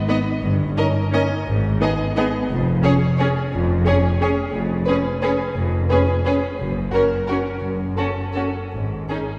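An expressive, close violin section carries the melody of this sweeping, festive orchestral ballroom waltz in Db major, moving in a rubato 3/4 at 150-190 BPM while a second violin line and a smooth, distant viola accompaniment fill in beneath it with a rich vibrato. A dark French horn section holds sustained chords throughout. The bowed double basses sit up front, paired with a focused cello section, to form the bass from 0.4 s to 9.0 s, and the whole ensemble is heard from further back in a reverberant concert hall.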